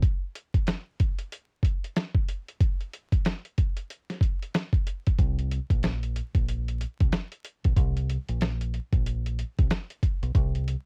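A dusty, sampler-style drum kit leads this gritty, tough boom-bap hip-hop excerpt, its thumpy kick, medium-tuned snare and hi-hat sitting up front with a compressed, tape-saturated crunch. The groove moves at 93 BPM in 4/4 with a 62% swing on the sixteenths, and the drums play alone as a break for the first 5.2 seconds. At 5.2 seconds a deep, fingered electric bass enters, dark and round with a punchy attack, holding low between Bb1 and C2 and sitting just as close to the front as the drums. The bass drops out at 10.7 seconds, just before the cut at 10.9 seconds. The sound is dry and close, with the character of a home cassette recording and a layer of vinyl crackle over the top.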